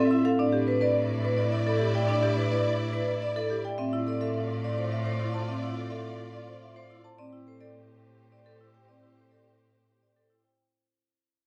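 A bright, ringing vibraphone played with hard mallets carries the melody in this meditative, hypnotic minimalist classical piece in 3/4, over marimba arpeggios, lush sustained chords from a bowed violin section, and a single focused cello holding the bass, all heard from further back in a large studio space as the fragment fades out across its full 10.6 seconds.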